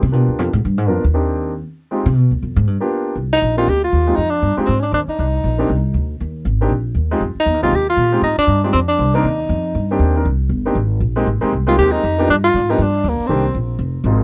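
A woody, thumpy pizzicato upright bass opens this swinging, smoky jazz excerpt with a brief featured passage at 0.0 seconds, and a warm, polished, present grand piano joins a moment later as accompaniment. At 3.3 seconds a dark, breathy tenor saxophone takes the melody up front, playing in a jazz style with a soft subtone, vibrato, scooped notes and a smooth top end, lightly coloured by tape echo. The harmony moves through rich seventh chords, including altered dominants, while the bass keeps a firm, up-front pulse in a brisk swing feel. The saxophone's line drops out at 13.6 seconds, shortly before this fragment of a longer piece is cut off. The sound is dry and close, like a 1970s studio session, with only a light touch of reverb.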